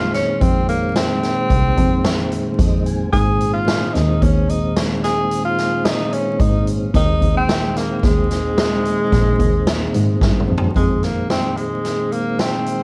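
Set in a small, moderately reverberant room with a layer of vinyl crackle, this tense, brooding progressive instrumental excerpt moves at 110 BPM in a straight 7/4, in F minor. Up front, a distant, roomy tenor saxophone carries a punchy jazz melody with vibrato and scooped notes through tape echo, while a mellow, dark tonewheel organ with overdrive, chorus vibrato, third-harmonic percussion and a stopped rotary speaker accompanies over Fm7, Abadd9 and Ebsus4, adding a fill at 2.3 seconds. Beneath them, a single bowed double bass sounds biting and intense, and an acoustic street-band drum kit with a boomy kick and medium-tuned snare plays a fill at 10.2 seconds before the harmony returns to Fm7 at 10.8 seconds.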